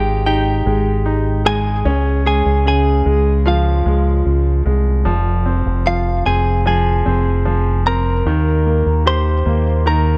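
In a straight, unhurried four-four, this hopeful, heartfelt pop ballad fragment sets a clean, compressed electric guitar melody, picked high and up front, over a clear concert grand piano with a short sustain and a round, punchy fingered bass run through an envelope filter, all moving through Db, Fm and Eb in a dark, dry production.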